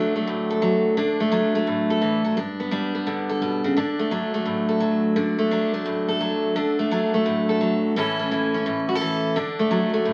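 Swung eighth notes drive a brisk 172 BPM in 4/4, giving this nostalgic, heartfelt country piece an easy, lilting bounce. A lone picked steel-string acoustic guitar carries everything, its bright, full-bodied dreadnought tone sitting up front and ranging from G2 to A4. The harmony stays rooted in D major, moving from D to G at 2.4 seconds, back to D, then to A at 8.0 seconds before settling home on D at 9.4 seconds. A wet studio reverb with a one-second tail surrounds the guitar. Vinyl crackle from a very old 78 rpm record adds a worn, bygone character. This 10.1-second passage is cut from a longer piece.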